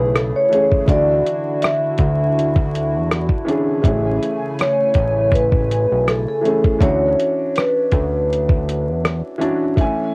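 Nostalgic and dreamy, this short lo-fi hip hop passage moves at 81 BPM in 4/4 with a gentle swing on the sixteenths, cut from a longer piece. A mellow, ringing vibraphone played with soft mallets carries the melody with a slow motor vibrato, softened by a low-pass filter, cassette tape colour and plate reverb, until it stops at 9.0 seconds. Beneath it, a woody upright piano with audible action noise and long sustain supplies intimate accompaniment, while a hollow, flute-like pad holds sustained chords through chorus until 6.8 seconds. A fat, saturated analog bass with a fast pluck sits up front alongside a gritty, compressed sampler-style drum kit of thumpy kick, hi-hat and rim click that enters at 0.2 seconds. The harmony rocks between Amaj7 and Dmaj9, and the whole piece sits in a moderate booth ambience with the character of a home cassette recording and a layer of vinyl crackle.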